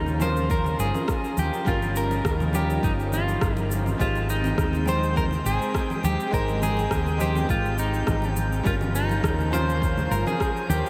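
A clean, picked electric guitar carries the melody up front, its lines dressed in spring reverb, analog delay and shimmer over a sunny, blissful sunset chillout groove at 103 BPM in Ab major, with a light 16th-note swing. A round, punchy hollow-body bass sits close beneath, while a brilliant grand piano through a low-pass filter and an airy, detuned unison pad with chorus and phaser hold the Eb9/G and Abmaj7 chords in the background. Overdriven electronic shaker, congas and rim click enter at 0.1 seconds and an overdriven electronic kick at 0.5 seconds, both re-recorded in a large room, alongside faint, distant acoustic congas, and a glassy, drifting harmonics texture appears at 4.5 seconds, all steeped in a huge, dreamy reverb in this short section cut from a longer piece.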